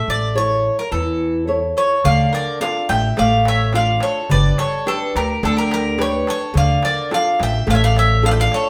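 Opening on an A chord with the Greek bouzouki's bright, metallic double strings up front over fingerpicked flamenco guitar and a woody, growly pizzicato upright bass, this bittersweet, brooding Greek folk excerpt at 107 BPM in 4/4 brings in a picked bowl-back mandolin in the background at 1.8 seconds, then turns to D minor at 2.0 seconds as a crisp, saturated metal-shell darbuka joins it in the background, moving through G and back to D minor as the live band plays together in a stone room with a wet reverb.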